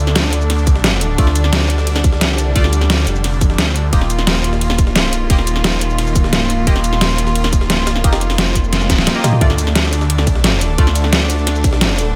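Dark technical drum and bass with a tense, dark mood, cut from a longer piece and moving in a straight 4/4 feel. A clear studio string section holds bowed, sustained chords throughout, its biting ensemble tone touched with light vibrato and pumping under sidechain, while a thick, swirling detuned saw bass sits up front, saturated and run through a phaser. The drums are layered: a tight electronic kick enters at 0.7 seconds, a dubstep kit adds a deep snare, metallic hats, shaker and toms from a small room, and a very quiet, gritty jungle sampler-style kit contributes a high-tuned snare and ride cymbal from a larger space. A nasal, band-passed chord stab lingers in the background from 1.2 seconds, bright and decaying, with phaser and delay. The harmony shifts from D minor to an Eb power chord and back to D, with a drum fill at 8.7 seconds, all under a light reverb.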